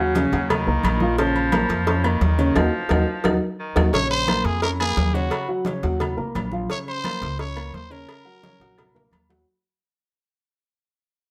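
A driving, danceable salsa excerpt at 174 BPM opens with a forceful, raspy baritone saxophone second line over a woody upright piano and a thumpy, up-front pizzicato upright bass, while congas, a tight cowbell, ringing agogo bells and timbales, and claves sit mostly in the background. A band accent and drum fill lead to 3.9 seconds, where the saxophone stops and a growling, bright trumpet with light vibrato takes the melody up front over minor chords. The sound also fades out from 3.9 seconds, with another drum fill closing it near 9.5 seconds in a moderate studio reverb.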